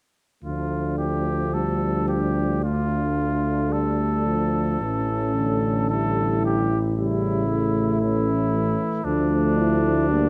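A mellow, up-front tuba anchors this melancholic, elegiac classical brass band fragment, a hymn-like piece in D minor at a rubato 55 BPM, as a clear cornet with light vibrato sings the melody over a dark euphonium, a soft-attacked trombone with vibrato and a tight French horn section that holds a second line in the background from 0.5 seconds, while the harmony moves from D minor to A7 and back in a close, detailed recording with light reverb.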